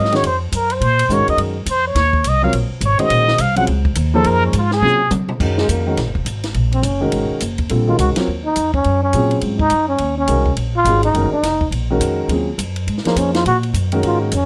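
Light reverb gives this short cut from a longer modal jazz performance an intimate, natural sound, with the horns and bass placed up front. A plunger-muted trumpet opens with a brilliant, forceful wah-wah solo full of vibrato and punch, playing until 5.1 s, and a drum fill arrives at 4.8 s. From 5.6 s a straight-muted trombone takes the second solo: it is clear yet nasal and breathy, with soft attacks, scooped notes, light vibrato and a close-miked, almost whispered tone. Beneath the horns, a warm grand piano with audible action noise keeps the harmony on a single chord, and a pizzicato upright bass with gut strings sounds woody and thumpy. The compact cocktail drum kit sits low in the mix, dry, with dark cymbals, a high-tuned snare and a punchy kick, and carries a swung groove whose mood is spiritual and hypnotic.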